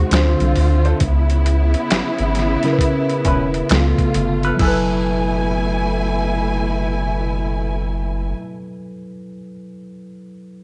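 A mellow tine electric piano, a rubbery, up-front square-wave bass and a lush, distant bowed string section with vibrato and portamento open this soulful, introspective neo-soul and R&B excerpt, joined at once by a gritty, pitched-down boom bap kit with a thumpy kick, finger snaps and crash that drops out at 4.9 seconds, while a dark, clean hollow-body jazz guitar with wah enters at 0.9 seconds as a second line and carries on to 8.4 seconds, over swung sixteenths and Dm7, C#m7, C#7b13 and F#m11 chords in light digital ambience.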